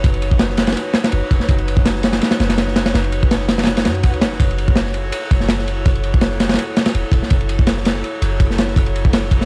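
Raw and frenetic, this drum and bass excerpt with a jungle feel runs at 165 BPM in F# dorian, driven by a crunchy, up-front breakbeat kit whose punchy kick, medium-tuned snare and dark ride cymbal sound saturated and gritty, as if captured in a small room with a rolled-off top. Beneath it, a deep, boomy 808-style bass with a sine tone, noise layer and tube saturation sits lower in the mix, its notes striking fast and then decaying. A faint electronic swell rises in the background from 3.8 to 4.4 seconds, and the whole dry, hardware-recorded sound carries a layer of vinyl crackle.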